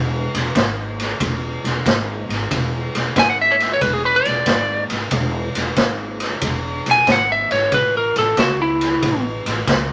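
A bright, twangy electric lead guitar, picked and slightly broken up, sits up front in this rollicking, laid-back electric blues shuffle, coming in at 3.2 seconds and playing until 9.2 seconds. Beneath it, an upright bass with steel strings opens the clip, its pizzicato tone woody and warm. A raw garage drum kit joins at 0.3 seconds, its kick, snare and ride recorded acoustically in a small room, with a boomy kick, a medium-tuned snare and a gritty, saturated sound whose top end is rolled off. The guitar is compressed and the drums are also placed up front and mid-forward, while the bass sits lower in the mix. The swung feel rides over a steady E chord that moves to A near the end, with light reverb around the band in this clip cut from a longer piece.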